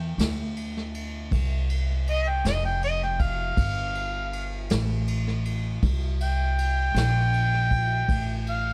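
A slow 12/8 blues at 53 beats per minute rolls along with a rollicking, swaggering gait, cut from a longer piece. A mellow harmonica carries the melody as a jazz-style solo from 0.0 to 8.7 seconds, its vintage tone roughened by overdrive and touched with light vibrato as it sits up front between Eb5 and G5. Underneath, a pizzicato upright bass with steel strings gives a woody, growly low end from F1 to E2, also placed up front. A vintage brush drum kit enters at 0.2 seconds, pairing a punchy kick and medium-tuned snare with dark ride cymbals in a natural studio room, all carried on tape echo. The harmony moves from a chordless opening to Fadd9 and then C5, in a dry, echo-heavy mix.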